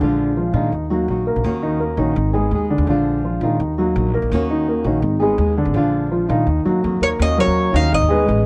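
A dark, mellow grand piano rolls out arpeggios over a woody, thumpy pizzicato upright bass and a thumb-plucked flamenco guitar, setting up a sultry, danceable Latin groove in Eb minor at 167 BPM that circles through Bb7, Ebm, Ebm7 and Abm. At 7.0 seconds a bright, metallic Cuban tres enters up front with a picked melody on its doubled strings, shortly before this short passage cut from a longer piece shifts into a new section. The sound is dry and close, like a 1970s studio, with a small room ambience around the vintage-toned piano and gut-string bass.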